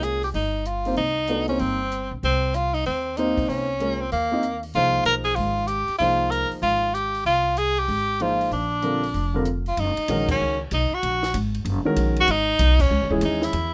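A breathy, vibrato-laden tenor saxophone carries the melody with scooped notes over short-sustained grand piano chords, woody, growly pizzicato upright bass and a dry cocktail drum kit with dark cymbals, high-tuned snare and punchy kick, giving this hypnotic, spiritual swinging modal jazz excerpt in light reverb a shift in harmonic colour at 9.8 s and band accents at 10.2 and 12.8 seconds.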